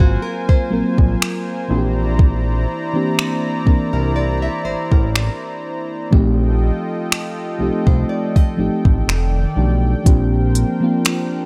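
The sound is dry and close, with the drums up front in this short, romantic slice of slow contemporary R&B at 61 BPM in 4/4, swung lightly on the sixteenths and tuned to A4 = 436 Hz. A soft, tape-tinged electronic kit of finger snaps, hi-hat and a gentle kick sets an unhurried pulse. Beneath it, a fat, detuned analog bass with a moving notch sits low and thick. A round, dark FM electric piano carries the accompaniment through chorus and phaser, while a slow-blooming sawtooth pad with chorus holds sustained chords. A fingerpicked nylon-string guitar adds delicate arpeggios with audible finger squeaks and tape echo until 9.0 s, and the bass drops out at 10.6 s. The lush harmony moves from Gbmaj9#11 through slash-bass ninth chords to F13 before settling on Bb69 at 10.1 s, giving the passage a smooth, late-night glow.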